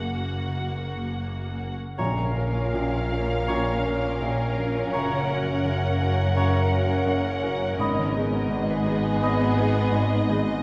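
A slow, rubato pulse around 83 BPM in 4/4 carries this bittersweet, sorrowful cinematic film-score passage, cut from a longer piece and set on a wet scoring stage that places the listener further back in the room. From the start a lush violin section sings the melody with vibrato, portamento and a soft attack, while a second violin line moves smoothly beneath it, and a viola section adds expressive, close accompaniment. A felt-muted upright piano murmurs in the background with its action noise audible, a bright concert harp rings out arpeggios, and a dark, woody cello section joins a rich, focused double bass section in the bass. At 2.0 seconds the harmony turns from Gbadd9 to Bb minor as a clear solo oboe and a pure, hollow flute enter with counter-lines, a very quiet, distant French horn section holds sustained chords, and timpani played with medium mallets on calf heads sound briefly until 3.1 seconds. 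The progression continues through Gb to Ab minor, with the oboe and flute falling away just before the strings, piano, harp and horns reach the end at 10.6 seconds.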